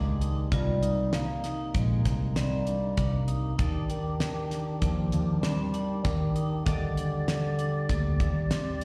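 A dark, smooth-topped bass clarinet sings the classical-style melody over a percussive, lightly overdriven tonewheel organ turning through a slow rotary speaker, ringing hard-mallet vibraphone arpeggios and a round, foam-muted picked electric bass, with slapback echo on the clarinet, organ and vibraphone, before a dry 70s drum kit with a tight kick and fat snare joins at 0.2 s to drive this bright progressive instrumental at 98 BPM in 5/4 through Ebmaj7 and Cm7 in Eb major, heard live through a venue PA in recital hall reverb with a faint mains hum.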